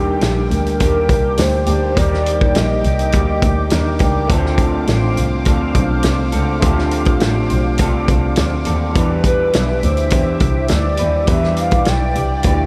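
Mellow and hazy, this indie and bedroom pop excerpt at 103 BPM in 4/4 drifts over Ebmaj7, Dm7 and Em7 chords, where a hollow, woody clarinet-like synth lead sings the melody through analog chorus and tape echo, opening at 0.0 seconds and returning at 9.0 seconds; up front, a rich bowed double bass with vibrato and portamento sits beside a punchy, gritty acoustic drum kit, while a slightly broken-up electric guitar with lush chorus and warbly pitch drift, a barky overdriven tine electric piano with cassette-tape color, and a swirling phased analog pad sit behind, the mix soaked in a huge, dreamy reverb.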